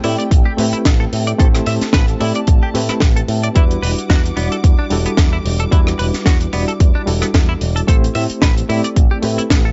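A reedy electric piano with fast tremolo, sidechain pumping and tape echo drives this sleek, cosmic nu-disco excerpt over Am7 and Em9 chords. From the first beat it sits alongside a twangy, clean guitar riff carrying analog chorus and 12-bit sampler grit, lush bowed strings in the background, a punchy envelope-filtered picked bass, and a tight, dry funk kit with a high-tuned snare, rim clicks and hi-hat. A layered electronic kick enters up front at 0.3 seconds, and the whole excerpt carries a gritty cassette character with a dulled top end and small room ambience.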